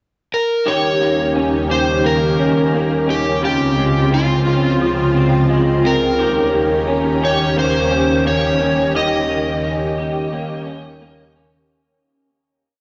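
This short dream pop piece opens with an overdriven slide guitar, dark and up front, carrying a melody built from song-like motifs between F4 and Eb5, washed in shimmer reverb. Alongside it, a vintage string machine plays lush, sustained sawtooth chords with a sub octave and slow attack, up front as well, its sound colored by phaser, ensemble chorus and shimmer reverb. An electric guitar through a small old amp adds a fingerpicked roll of arpeggios, slightly broken-up, compressed and lo-fi, with ensemble chorus, shimmer reverb and delay. At a straight 87 BPM in Eb mixolydian, the harmony moves from Eb7 to Dbmaj7 and back to Eb7 after a brief pickup bar. The mood is floating and ethereal, set in a huge ambient space with a dark production, and the music fades out from 8.9 to 11.7 seconds, with the arpeggiated guitar lingering until 12.3 seconds.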